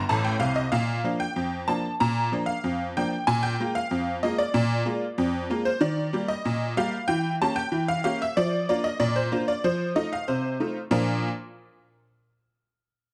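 Ragtime piano in a lively, playful 2/4, this short excerpt from a longer piece features a solo tack piano with a metallic, jangly, percussive bite and short sustain, up front in a dark production with spring reverb and small-room ambience, opening on a honky-tonk fill before running through Bb7, Eb and Edim7 changes and stopping at 11.3 seconds.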